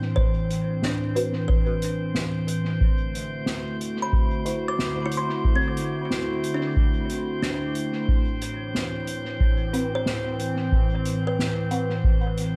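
A dry, deep electronic kick sits up front from 0.2 s, setting a relaxed 91 BPM 4/4 pulse with a light swing on the sixteenths, while a distant, roomy soft-mallet kit adds hi-hat and a medium-tuned snare trailed by dub echo. This ambient dub fragment in A dorian has a deep, hazy mood, built on a warbling, detuned tape-like pad that holds sustained chords up front, nostalgic and lo-fi under chorus and its own reverb. A woody, hollow-sounding kalimba rings through arpeggios with dub echo, and a bright glass-harmonics texture floats in calm, drifting overtones. A muted, nasal dub chord stab, resonant and soaked in phaser, lush chorus and echo, sits in the background from 1.2 s and returns at 9.7 s. The harmony moves from Amadd9 to D9 and settles on Am69, all inside a small, lightly reverberant room.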